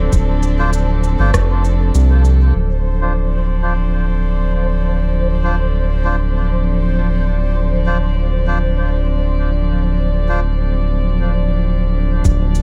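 Opening on a Dm7 chord, this spacious, meditative ambient dub excerpt in D minor at 99 BPM sets distant, floating strings holding sustained chords over a round, deep analog bass with tube saturation sitting up front, while a bubbling, resonant stepped-filter texture with chorus drifts alongside. A muffled, thumpy kick and an echoing electronic cabasa and rim click appear only briefly at the start and again at 12.2 seconds. Meanwhile reedy, breathy melodica stabs trail dub echo until 10.4 seconds, and a filter sweep on the strings runs from 2.6 seconds through an echo-heavy, dry mix.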